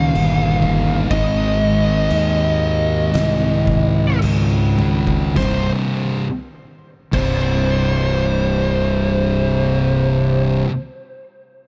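Stoner and doom metal at a crawling 51-63 BPM in C phrygian, hypnotic and heavy, where a dark, distorted fuzz lead guitar with analog delay carries the melody high over two thick fuzz guitars grinding out the riff, one sitting back in the mix. Up front, a growly, punchy fingered bass with overdrive anchors the low end, while an oversized low-tuned drum kit with a fat snare, punchy kick and dark cymbals pumps in a bright stone room from the background, slowing through the opening and closing on a fill from 4.8 to 5.4 seconds before the drums drop out at 7.5 seconds. The small-room production is dark and warm, and the passage shifts from Eb and Ab chords to a C5 power chord at 5.4 seconds.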